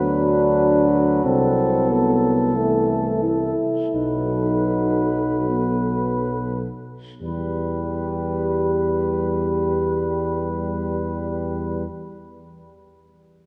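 Opening with a slowing, rubato feel, this melancholic and solemn hymn-like fragment for classical brass band pairs a mellow cornet melody, touched with light vibrato, with a very quiet French horn section carrying the second line, while a clear trombone sits in the background, a distant, roomy euphonium fills the accompaniment and a warm tuba holds the bass up front, inside a wet church reverb.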